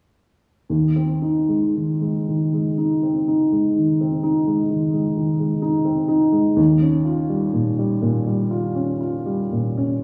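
An upright piano enters at 0.7 s and carries this short fragment of a romantic classical nocturne alone, playing through to 10.0 s. The mood is dreamy and nostalgic, moving slowly in 12/8 at roughly 38-44 BPM counted in dotted quarters, with a rubato feel that lets the time breathe. The piano has a woody, natural tone that sits up front, staying in the low and middle register between Eb2 and F4. In Ab major, the harmony rests on Ab/Eb before shifting to Eb9 at 6.6 s. A generous large-studio reverb with a 1.2-second decay wraps the instrument in studio ambience, giving a sense of hearing it from further back in the room.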